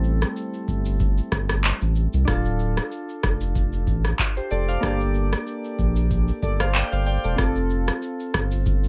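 Breezy and sunny, this short afrobeats excerpt with a light sixteenth-note swing sets round, gentle electric-piano-like synth keys with chorus over a thick, saturated sub bass and a booming, overdriven analog drum machine of deep kick, handclaps, rim click and shaker, all kept close and dry as the chords move from Am7 through Dm and Gmadd9 to F.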